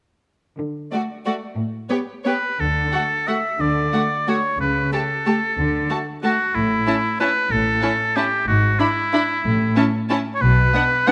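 Elegant and sweeping, this classical excerpt moves in a rubato 3/4 at roughly 168-202 BPM in D major, cut from a longer piece. The cellos open the passage at 0.6 seconds with a rich, focused bass line, joined almost at once by the violins and violas, all bowed with vibrato and a lush ensemble sound. The melody sits with a dark violin section set in the background, its expressive portamento and smooth top lending a veiled quality, while a second violin section carries a richer inner line and the violas supply an even, smooth accompaniment. A clear oboe enters at 2.3 seconds as a second line, up front and present with light vibrato and a soft attack, and the double basses arrive at 2.6 seconds to deepen the low end. The harmony travels from D through A/C# and A to E7/G# before resolving back to A, all bathed in a moderate scoring-stage reverb that gives the strings a spacious bloom.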